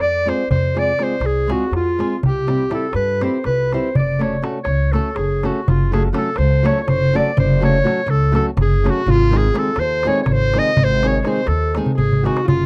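In a brisk 7/8 at 246 BPM counted in eighths, this restless, fiery Balkan wedding-band excerpt in F# Hungarian minor puts a clear, classical-style clarinet solo up front, over a woody pizzicato upright bass and a dark, fingerpicked flamenco guitar whose finger squeaks come through. A bright, thumb-plucked concert harp rings softly in the background as a second line, while a clay-shell darbuka played with soft hands sits close and dry, adding a drum fill from 11.9 to 12.5 seconds. The chords move through Fm, C, F#m and G#, and the dry, close 1970s-style studio sound carries only light reverb.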